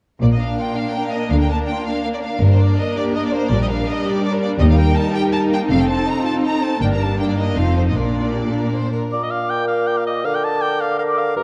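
Set in a concert hall with moderate reverb and a dark, warm production, this lively, cheerful fragment of a quick classical-period movement in 3/4 at 163 BPM, played with rubato in Bb major, opens with rich bowed strings (two violin sections carrying the melody and a second line, violas in accompaniment, and a distant, lush cello section beneath close double basses) before handing off at 9.1 seconds to a clear, up-front cor anglais, a clear clarinet in the background, an airy flute ensemble and a mellow bassoon.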